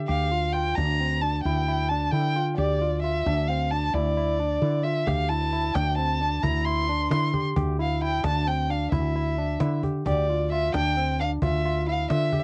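A home cassette recording with light reverb frames this driving, intricate progressive instrumental piece in 11/8, where a dark, woody bowed violin with vibrato carries the melody up front over bright, barky tine electric piano arpeggios through a combo amp and a round, hollow-body fretless electric bass, until a snappy, close cajon with snares joins at 5.1 seconds.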